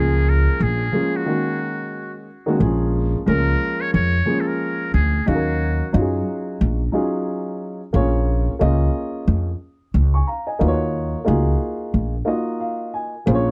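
Smooth and relaxed, this jazz-hop excerpt at 90 BPM swings lightly as a buzzy, breathy muted trumpet with analog delay carries the melody until 5.9 seconds over a boxy, mellow baby grand piano and a woody, growly pizzicato upright bass that sits up front, with a break at 1.3 seconds and a piano fill at 12.3 seconds, all moving through minor seventh and ninth chords in a dark production with light reverb.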